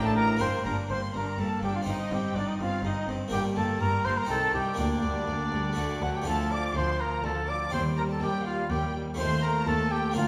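Brilliant and lively, this short cut from a longer baroque-style concerto movement moves in a brisk triple metre with a straight feel, built around a solo trumpet. The mellow trumpet sits up front with a soft attack and a roomy, slightly distant quality, carrying the melody throughout. Above it, two violin sections play with lush vibrato: one also carries the melody very quietly in a focused tone, while the other adds a smooth, even second line from further back. A brilliant, plucked harpsichord in the French style, with octave strings, supplies the accompaniment alongside a viola section kept in the background. Underneath, a clear, intense double bass section with a smooth top and an expressive, soft-edged cello section form the bass, as the harmony moves from G minor through C minor and D toward F7 by 9.2 seconds. A wet recital hall reverb gives the ensemble the spacious sound of a church or concert hall.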